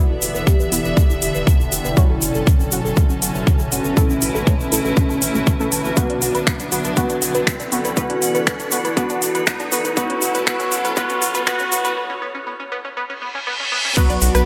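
A punchy, tape-warm electronic kick sits up front in this hypnotic, dramatic melodic techno excerpt, joined by a house drum kit with metallic hats, finger snaps, rim clicks and crash, plus a grainy egg shaker. Beneath them a round, deep analog bass and a swarming, tense drone anchor the low end, while a clear studio string section holds smooth sustained chords with vibrato. A driving, nasal sequenced synth spins arpeggios, a juicy, warbling polysynth carries the melody, and brassy synth stabs punctuate the texture, each shaped by filter sweeps across a build-up that spans the passage. A cloudy, blurred granular pad adds a bright haze, and many of the parts carry sidechain pumping inside a lush hall reverb. A riser enters in the background at 3.6 s and leads into a break at 12.0 s, a reverse cymbal follows at 13.2 s, and a glassy wavetable pluck appears only at 14.0 s as the clip cuts off.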